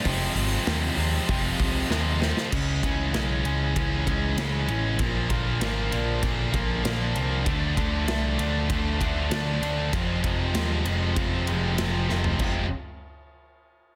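Two bright guitars, one overdriven and one scooped and high-gain, open this brooding, angsty quiet-loud alternative rock excerpt with a riff over growly overdriven bass and a big studio-room drum kit with a punchy kick, and after a drum fill at 1.9 seconds a dark, slightly broken-up guitar from a small old amp joins at 2.5 seconds with subtly chorused arpeggios in the background as the chords move from Fm through Dbm, Bb and Dm, set in a dense, heavily limited master with light room reverb.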